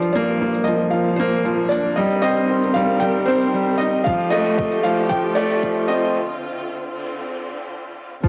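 An up-front, clear baby grand piano riff anchors this cinematic, melancholic piano-and-strings electronica fragment at 115 BPM, moving through Gm7, Cm7, Fadd9 and Dm7 as a soft, intimate felt-muted upright piano carries the melody with audible action noise until 6.2 seconds. Behind them, a lush, expressive symphonic string section holds bowed chords with vibrato and portamento under sidechain pumping and a filter sweep, while a distant, focused cello section supplies a very quiet bowed bass. A tape-warm electronic shaker ticks until 6.0 seconds and a deep electronic kick drum enters at 4.1 seconds, with everything but the cellos colored by cassette and the whole mix bathed in a moderate hall reverb through the build-up and break.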